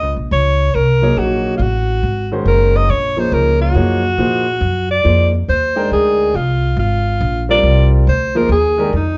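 Jazz in a swung 3/4 at 139 BPM, set in Eb dorian, with a hypnotic, intense mood, cut from a longer piece. A clear alto saxophone carries the solo melody up front with scooped notes, over a woody, thumpy pizzicato upright bass, while a warm, polished concert grand piano with long sustain and audible action noise accompanies from 1.0 s as the harmony moves from Ebm9 to Fm9 at 5.0 s. A moderate club reverb sets the sound further back in the room, with a darkened top end.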